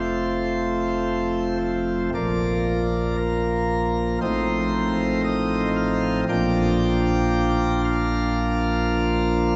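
Bathed in a cathedral reverb that rings for 5.1 seconds and with its top end capped at 8.0 kHz, this grave, dark excerpt of a classical chorale-style piece features a solo pipe organ on a full, brilliant plenum with mixtures, baroque voicing and audible chiff, set up front and spanning F1 to G5 as it moves in rubato through F, Bb, F7/A and Bb over 9.6 seconds.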